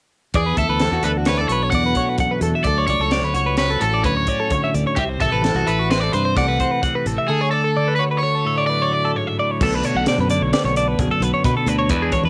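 A growly fingered electric bass and a crisp fusion drum kit, with its high-tuned snare, punchy kick, bright cymbals and gritty tape saturation in a small pumping room, open this playful, wistful math rock and midwest emo excerpt at 130 BPM in 5/4. At 0.4 seconds they are joined by an up-front crunchy overdriven lead guitar, a twangy, compressed twelve-string electric guitar accompaniment with warbly pitch drift, and a second clean twelve-string playing arpeggios, moving through E9sus4, Dmaj7 and C6 until the lead drops out at 9.1 seconds and the dry home cassette recording settles on Bm7 at 9.6 seconds.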